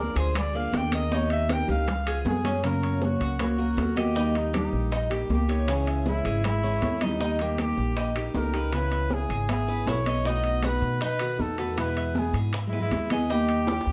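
A straight 4/4 groove at 158 BPM drives this sultry, nostalgic Cuban son and guajira passage, where a distant, vibrato-laden trumpet opens with a solo over an up-front, woody pizzicato upright bass, a picked archtop guitar, metallic double-stringed tres arpeggios, bright high-tuned congas, ringing metal-shell timbales, tight, very quiet bongos and grainy maracas in the background, before a full-bodied, fingerpicked nylon-string guitar adds a second line at 2.3 s, set in a dark, warm production with moderate large studio reverb.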